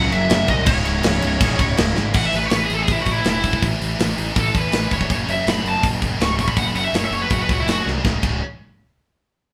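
A straight 4/4 pulse at 163 BPM drives this heavy, aggressive metal cut from a longer piece in C# minor, played by a band together in one room with moderate studio reverb. The tight acoustic drum kit sits up front with bright cymbals, a medium-tuned snare and a tight kick, and fills mark the section changes. A growly, overdriven fuzz bass anchors the low end, while two distorted, picked rhythm guitars, one heavy and one scooped, play low riffs in the background. A double-tracked, compressed fuzz guitar thickens the opening riff until it drops out at 2.1 seconds. At that point the up-front high-gain lead guitar, which carries a bright melody from the start, launches into a solo over chords moving from A5 to F#5. The solo runs to 8.0 seconds, where the band lands on C#5.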